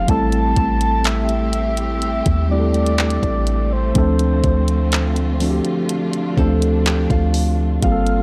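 Contemporary R&B with a sensual, moody feel, this short cut from a longer piece moves at a slow 62 BPM in a straight 4/4, shifting from Am7 to Dm7 at 4.0 seconds. A soft, octave-layered synth lead carries the melody with a round, detuned tone, vibrato and a chorus effect, while a mellow tine electric piano sits up front with clean, direct accompaniment. Beneath them, a boomy 808-style bass with a fast attack and decaying notes anchors the low end, and a studio string section holds bowed chords with expressive portamento and a smooth top. A produced R&B drum kit of handclaps, hi-hat and a soft kick enters at 0.1 seconds. Briefly, from 6.4 to 7.8 seconds, a small fingerpicked nylon-string guitar adds arpeggios through tape echo, all within a dry, gritty hardware recording.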